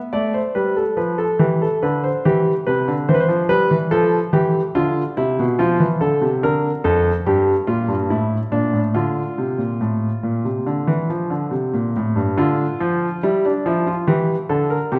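A lush hall reverb with a long tail surrounds a close, intimate grand piano whose action noise is clearly audible and whose notes ring with long sustain. This serious, driving baroque-style two-part invention for solo piano moves through minor-key harmony across a range from F2 to D5, shifting into a new section at 12.4 seconds and reaching a diminished chord at 14.1 seconds. The recording is cut from a longer piece.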